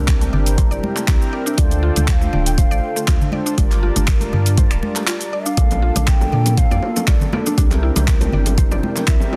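Dry and dense, this heavily limited modern master pushes an overdriven, deep electronic kick up front in an afro house groove at 120 BPM in 4/4, with a light 16th-note swing and a spiritual, earthy mood. A layered deep house kit, also overdriven and re-recorded in a small room, adds finger snaps, handclaps, hi-hat and shaker, while bright, close congas struck with hard hands and, from 5.7 seconds, round, low-tuned vintage bongos played with soft hands sit in the background. Underneath, a round sine sub bass holds the low end, and a smooth, detuned sawtooth pad with a moving notch sustains chords through C7, Dm7, Gm7 and Bbmaj7, pumping with the sidechain along with the other synths. A woody FM mallet-like pluck spins arpeggios through chorus, phaser and delay, and a dark, brassy sawtooth synth brass with a filter sweep punctuates with stabs. From 1.6 seconds a breathy, hollow bansuri carries the melody with vibrato and tongued notes, trailing delay, and a short break at 5.1 seconds briefly interrupts the flow before the groove carries on.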